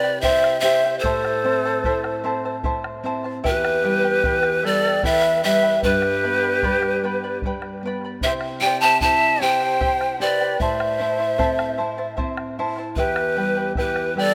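The pan flute, quena, charango, nylon-string guitar and bombo begin together at 0.0 seconds in this short cut from a longer Andean folk piece, which has a wistful yet festive mood and a straight 3/4 metre. Close and up front, the pan flute carries the melody with a bamboo tone, soft attack, gentle chiff and vibrato. Beneath it, the larger quena adds a bright, end-blown wooden second line with a crisp attack and expressive vibrato. The charango's fingerpicked double strings shimmer above the dark, full-bodied fingerpicked guitar, while the bombo gives a deep, dry thud. The harmony cycles through C, Am, Em and G in a lush hall reverb, and the mix has the rough feel of a home demo.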